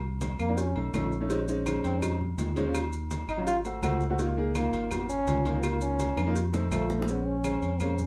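A round, up-front fingered electric bass and soft-handed, very quiet congas open this lively, sophisticated Afro-Cuban jazz excerpt at 166 BPM, joined within a second by background cowbell and bongos, grainy maracas, ringing, distant timbales and agogo bells, dry woody claves, a boxy upright piano with long sustain, and a mellow, punchy, close-miked trombone that solos forcefully with light vibrato, while a drum fill arrives at 6.2 seconds amid moderate studio reverb touched by lossy compression artefacts.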